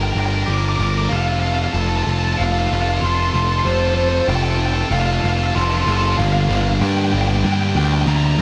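A dark, compressed fuzz lead guitar carries a high melody through distortion and digital delay over a bright, double-tracked sludgy guitar riff and an up-front, overdriven picked electric bass, building from 0.0 to 6.2 seconds over Gm and F before moving to Gm7 in this melancholic, cathartic post-rock excerpt at 95 BPM in G minor, set in a moderate studio reverb with a dark, warm production.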